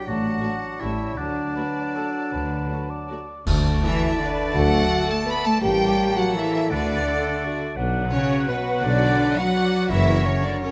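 A classical orchestral ballroom waltz in D major, this festive, elegant passage moves in 3/4 at 148-184 BPM with a rubato feel, cut from a longer piece. A chamber violin section carries the melody with expressive, close vibrato, while a clear, roomy clarinet, an airy silver concert flute, a mellow cor anglais and a very quiet, focused second violin section weave second lines around it. A smooth, distant viola section and a soft-attacked bassoon fill the accompaniment, and a close-miked, tight French horn section holds sustained chords in the background. The low end rests on an even cello section and a dark double bass section with portamento, joined at 3.5 s by a mellow tuba as the music moves into a new section. A band accent at that moment brings in clash cymbals and concert bass drum, dark and dry, for a brief strike, and the harmony travels from D through A7b9 and Bm to a closing F#7, all set in a moderate scoring-stage reverb.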